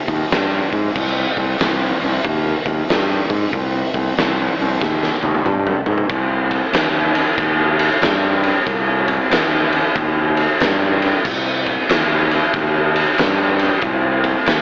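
Hypnotic and brooding, this short cut of stoner and doom metal rides a swung 4/4 groove, with a fuzz-laden fingered electric bass, growly and overdriven with tube saturation, pushed up front alongside an oversized, low-tuned acoustic drum kit. The drums carry a punchy kick, fat snare and dark cymbals across crash, ride, hi-hat and toms, set in a bright stone room that pumps. A drum fill from 4.8 to 6.1 seconds leads into the second section, and the whole mix has a dry AM-radio character.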